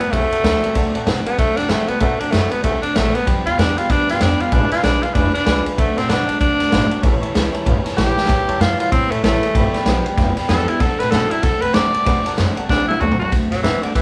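A swung 4/4 groove drives this rowdy, upbeat rockabilly cut from a longer piece, with a vintage drum kit up front (punchy kick, medium-tuned snare, ride and toms) dropping fills at 8.1 seconds and again near the end, and a thumpy pizzicato upright bass on gut strings anchoring the low end. A raspy, forceful tenor saxophone takes the solo, gritty with light vibrato, over a bright, full-bodied picked steel-string acoustic guitar and a dark, mellow upright piano tucked in the background, the piano stopping at 13.3 seconds. The band plays live in one small room, with moderate studio reverb adding a natural sense of space.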